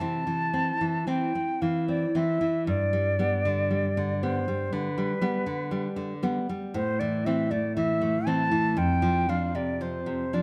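A concert flute and a nylon-string guitar sound together from the very start of this lyrical, serene romantic duo cut from a longer piece: the flute's pure, expressive melody, with its vibrato and soft attack, sits up front over the guitar's deep, fingerpicked classical accompaniment, which is also close and present, as the two move freely in rubato through C, G, Am and Dm7/F within a moderate recital hall reverb captured by close, detailed microphones.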